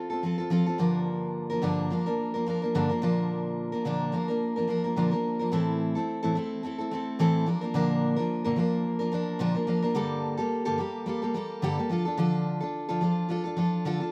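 A picked steel-string acoustic guitar carries this short pop piece entirely on its own, its full-bodied jumbo tone sitting up front in the mix with a slapback echo trailing each note. The mood is carefree and easy-going, moving at 108 BPM in 4/4 with a gentle swing on the sixteenth notes. The guitar ranges from G2 to Bb4. The opening passage moves from F to Gm7 and Bb, and a second passage begins at 5.5 seconds, running through Am, Bb, Gmadd9 and finally Dm. Recorded outdoors, the sound carries only a light reverb, and the clip is cut from a longer piece, ending at 14.1 seconds.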